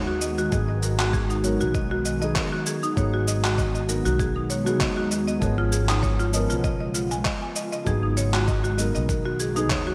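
Meditative, hypnotic organic downtempo at 98 BPM in G# dorian, cut from a longer piece, where a soft felt-muted upright piano with lush chorus, sidechain pumping and digital delay plays over a woody pizzicato upright bass as an ethereal, airy detuned pad with phaser sits in the background, while a buzzing, dry marimba plays delayed arpeggios and gritty, overdriven sampled cabasa, handclaps with gated reverb and a thumpy kick enter at 0.2 and 0.5 seconds, moving from G#m7 to C#7/G# and back in a bright 1980s-style digital production with a lush hall reverb.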